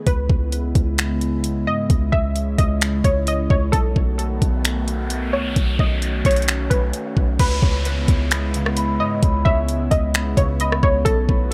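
Atmospheric cloud-rap at 131 BPM in a hazy, spacious half-time feel in C# minor, where a nostalgic tape-like pad with sidechain pumping holds sustained chords beneath a detuned, wave-folded dusty pluck melody with digital delay, a deep, boomy 808-style bass, and an up-front R&B kit of knocking kick, metallic hats, finger snaps, rim click and crash, while a noise sweep enters at 4.4 seconds and a ringing, thumb-plucked concert harp enters with delayed arpeggios at 7.4 seconds in this excerpt from a longer piece.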